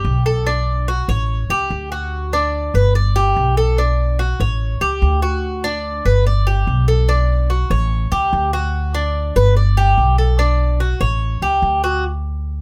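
Cuban son in the guajira vein, this sunny, danceable excerpt moves at 145 BPM in a straight 4/4, with a cycling Bm7, A7, D and G progression. A bright, metallic Cuban tres picks arpeggios on its doubled strings, some octave-doubled, while a woody, thumpy pizzicato upright bass holds the low end. Both sit up front in a close, detailed, nearly dry sound, with the tres stopping at 12.0 seconds and the bass ringing on to 12.6 seconds.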